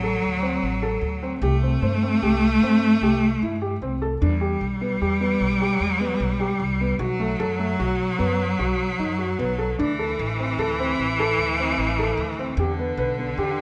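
Moving in an uneven 7/4 at 150 BPM with a straight feel, this restless, pensive contemporary chamber piece in E minor, cut from a longer work, sets a felt-muted upright piano's soft, boxy arpeggios with audible action noise beside a clear, focused bowed cello singing a vibrato second line and a woody pizzicato upright bass, all in a moderate recital hall reverb across its 13.6 seconds.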